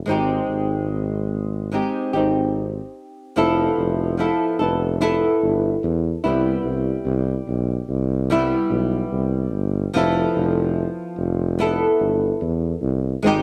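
A slow 73 BPM pulse in 4/4, with a gentle swing on the sixteenths, carries this dreamy, nostalgic bit of indie and bedroom pop in F lydian, cut from a longer piece. An acoustic flamenco guitar, fingerpicked with audible finger squeak and coloured by lush chorus and a vibrato effect, sits up front as accompaniment, while a mellow tuba with light vibrato and a smooth top carries the bass from 0.1 seconds. A touch of room reverb surrounds both parts as the harmony moves from Abmaj7 through Fmaj7#11 and Cmaj7 before returning to Fmaj7#11.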